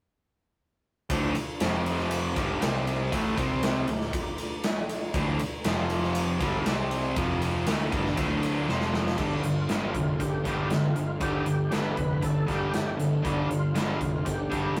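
Driving and swaggering, this classic rock excerpt moves at 119 BPM in D minor, with a biting overdriven guitar riff up front, a second, very quiet distorted guitar also playing a riff, a punchy fuzz bass and a big rock drum kit with bright cymbals all kicking in at 1.1 seconds. A lush, vintage string machine hums sustained chords underneath until a drum fill leads to 9.2 seconds, where a thick, gritty tonewheel organ takes the melody through a slow rotary speaker with key click, joined by a very quiet picked steel-string acoustic guitar with audible finger squeak. The sound is a rough rehearsal-room recording with moderate reverb.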